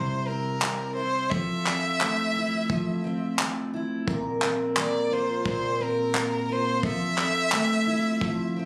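Acoustic pop at an easy-going, sunny 87 BPM in F major, this brief cut from a longer piece sets a smooth, close bowed violin melody with vibrato over a double-tracked, woody, full-bodied picked steel-string acoustic guitar moving from C7 to Fmaj7 and Bbsus2, while an airy, polished country drum kit of handclaps and a punchy kick enters at 0.6 s, all heard through moderate studio reverb on a compressed phone recording made in the room.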